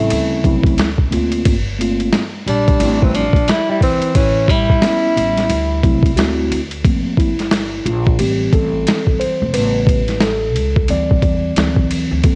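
Jazz-hop at 89 BPM in G dorian, with a smoky, nocturnal mood and a swung sixteenth-note feel, caught mid-flow from a longer piece. A breathy tenor saxophone carries the melody up front, its subtone voice marked by light vibrato and scooped notes, while a dark, slightly broken-up electric guitar plays a fingered second line through cassette tape and tape echo. Both stop at 6.5 seconds, and from 6.8 seconds the mellow tine electric piano, which has been comping clean and direct underneath, steps forward to take a solo over chords moving through Gm11, Am7, A9 and D9sus4. A woody pizzicato upright bass with steel strings and tube saturation anchors the low end, and a gritty, pitched-down boom bap sampler-style kit sits up front with a thumpy kick, medium-tuned snare, hi-hat and ride cymbal. The whole mix has the feel of a home recording on cassette, touched with digital ambience.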